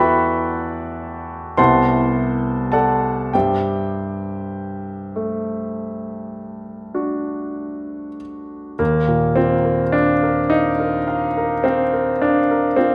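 Serene and dreamy, this impressionist classical excerpt for solo piano drifts in 9/8 at a slow, rubato 32-38 BPM in G major, its chords moving from Emadd9 through Cmaj7 to Gsus2 before shifting to an Ebsus2 at 8.8 seconds. The concert grand sits up front with an intimate, polished tone, deep bass and long sustain, its action noise audible. A wet recital hall reverb surrounds the piano.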